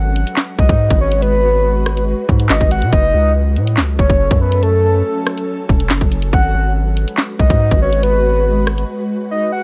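Drill hip hop with a tense, ominous half-time feel, where an ethereal, detuned pad washed in ensemble chorus and built-in reverb holds sustained chords under a deep, decaying 808-style bass, a hard-clipped kick with sharp snare, bright hats, rim clicks and handclaps up front, and a soft, round, octave-layered synth lead carrying a second line through chorus, delay and vibrato, before the bass drops out at 8.8 seconds and the drums at 8.9 seconds for a short break in this dry, dark-topped mix cut from a longer piece.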